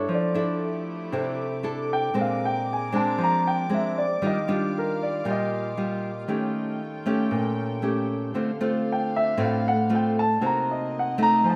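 Breezy and romantic, this bossa nova excerpt in straight 4/4 features a dark, mellow baby grand piano taking the melody as a solo throughout its 11.6 seconds, while a full-bodied, fingerpicked nylon-string guitar sits up front with audible finger squeak. Beneath them, a quieter studio string section holds sustained chords with a reedy, gut-string tone and a smooth top. The rough home-demo mix carries a moderate plate reverb, and the harmony drifts from Fmaj13 through Ebmaj9 and Eb7#11 before settling on Cm7b5.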